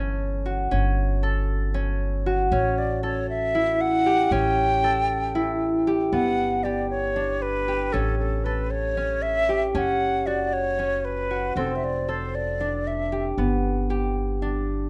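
Shimmering and hopeful, this short cut from a longer contemporary chamber piece in G lydian moves in a brisk 7/8 at 232 BPM (eighths), with ringing, fingerpicked concert harp arpeggios and dark, woody pizzicato upright bass on gut strings playing throughout while an airy wooden flute with crisp attack and expressive vibrato carries the melody from 2.5 to 13.3 seconds, all captured up front in a close, detailed, nearly dry room over chords that pass from F#m/G and A7 through Gmaj7, A, F#5 and F6 before settling on G.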